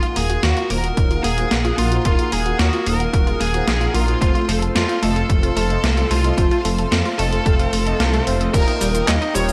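A dark, detuned saw bass sits up front, deep and rumbling with a beating, tube-saturated edge, entering at 0.2 seconds beneath a high-gain lead guitar that carries the melody with distortion and delay. This nostalgic, driving synthwave excerpt moves at 111 BPM in a straight 4/4, with chords shifting from Ebmadd9 to F at 4.2 seconds and landing on Ebadd9 at 8.5 seconds. A shimmering, chorused pulse-width pad holds sustained chords with sidechain pumping, while an analog pluck spins round arpeggios in the background, roughened by 12-bit sampler grit and tape echo. Bold, warbling analog synth brass adds chorused stabs, and a filter sweep runs across the arpeggios and polysynth through the opening section. A gated 80s digital drum machine supplies crash, handclaps, hi-hat, shaker and a gated-reverb snare, joined from 1.0 to 8.6 seconds by a punchy, overdriven electronic kick, all set in light digital ambience.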